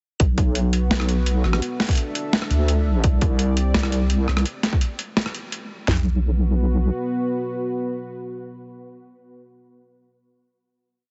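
This heavy, tense half-time drum and bass piece in B phrygian, at 169 BPM, opens straight into a drop at 0.2 seconds. A deep square-and-sine wobble bass with changing wobble speed sits up front alongside two drum kits. The trap kit drives a half-time pattern of hard-clipped kick, sharp snare and floor tom. The gritty, overdriven boom bap sampler-style kit adds a sparse beat of rim, closed hat and snare, sounding re-recorded in a small room. A dark, full-bodied sawtooth pad with a sub octave enters with a slow attack at 0.6 seconds, sitting low in the mix and holding sustained chords with chorus and sidechain pumping as the harmony moves through B5, D5 and C5 to a chordless moment, then settles on a final B5 chord at 5.9 seconds. The whole piece has a boxy, heavily compressed radio character with light reverb and a dulled top end.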